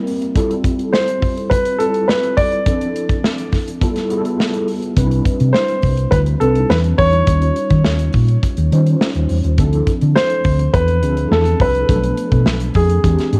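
A straight 4/4 groove at 104 BPM drives this slick, urban slice of polished 1980s jazz-funk pop, with a modern studio drum kit of tight kick, medium-tuned snare and hi-hat sitting up front with a cassette-tape tint. A mellow tine electric piano, clean and treated with ensemble chorus, lays down lush chords such as Fmaj9, G13 and D#13 from the start, while a dark, intimate grand piano carries the melody from 0.9 seconds, its action noise audible. At 5.0 seconds a round, amped hollow-body short-scale electric bass enters up front, deepening the homespun cassette-recorded studio sound of this excerpt.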